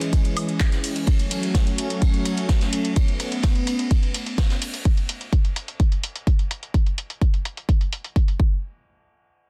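Dense and heavily limited in a small room, this bittersweet, expansive progressive house fragment at 127 BPM opens with a smooth, detuned sawtooth pad with chorus and sidechain pumping on C#m, F#m and Aadd9 until 4.8 s, set over an up-front, punchy electronic kick, a low-pass-filtered deep house kit of handclaps, metallic hats and woodblock, and a vintage brush kit with dark cymbals and a high-tuned snare that drops out at 4.7 s, leaving the deep house kit to carry on to 8.4 s and the kick to 8.5 s.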